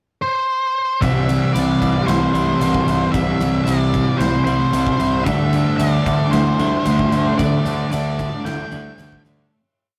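Wistful and dreamy, this short, complete shoegaze and dream-pop rock piece at 113 BPM opens with a dark octave-fuzz lead guitar stating its motif alone over a pickup bar before, at 1.0 seconds, an up-front thick fuzz guitar strumming chords with whammy-bar dips, a background overdriven garage guitar with volume swells, a very quiet twangy clean guitar picking arpeggios, a growling bass driving eighth notes, a big acoustic kit with punchy kick and bright cymbals in a half big groove, and a jingly tambourine join for a verse moving from C to Dsus4, all captured in a rough, saturated rehearsal-room sound before a fade-out from 7.4 seconds.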